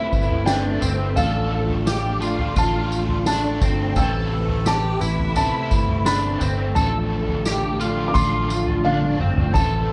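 A felt-muted upright piano carries a soft, boxy melody through digital delay from the first moment, set over a hollow-bodied, overdriven guitar shimmering with harmonic tremolo and lush chorus, a twangy, slightly broken-up guitar picking arpeggios through chorus and delay, and a sawtooth string machine holding mellow chords in the background. This ethereal, melancholic dream pop moves at a straight 86 BPM in 4/4, alternating Amadd9 and Dm/A, with a round, foam-muted vintage bass and a distant, roomy soft-mallet drum kit with punchy kick, tambourine and a drum fill at 8.8 seconds. The whole fragment sits in a small room with light reverb and the worn, warbling pitch drift of old cassette tape.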